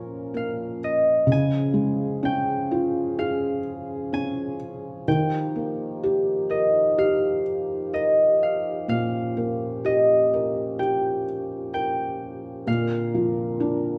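Sleepy and innocent, this children's lullaby drifts along at an unhurried pace in a straight, steady 4/4, cut from a longer piece. A concert harp carries the melody up front, its fingerpicked, ringing tone sitting high in a narrow range. Beside it, a felt-muted upright piano supplies the accompaniment, soft, dark and intimate, with a thick-felt, vintage character that keeps it close and smooth. Further back, a mellow French horn section holds sustained chords with a light vibrato and a classical, ensemble blend. The harmony moves from Bbm to Db, then settles on a long Ebadd9 before closing on Bbadd9 at 12.7 seconds. A moderate recital hall reverb surrounds the parts, lending the whole a gentle sense of space.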